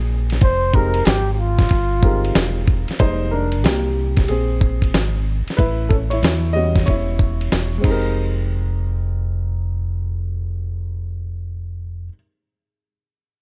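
A breathy, mellow flugelhorn with analog delay opens this cool, smoky jazz-hop piece at 93 BPM over a round, punchy dub bass, falling away at 2.7 seconds while a gritty, compressed sampler-style drum kit with a thumpy kick and fat snare drives the swung 16ths, and a smooth, vintage grand piano takes a solo from 3.0 to 8.2 seconds over Fm11, Fmadd9 and A9 chords inside a dark, ambient production.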